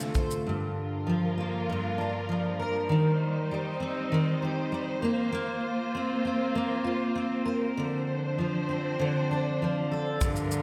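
Acoustic pop with a wistful, reflective mood, this short cut from a longer piece centers on an up-front, full-bodied fingerpicked steel-string acoustic guitar, double-tracked with slapback echo, joined at 0.5 s by a dark, lush bowed string section sustaining chords through Gm7, Eb6, Bbsus2 and Dm7, while an airy shaker with a punchy kick drum and a smooth bowed cello with vibrato and tape echo, set in the background, surface only at the opening and again from 10.2 s, the room bathed in wet concert hall reverb for a big arena sound.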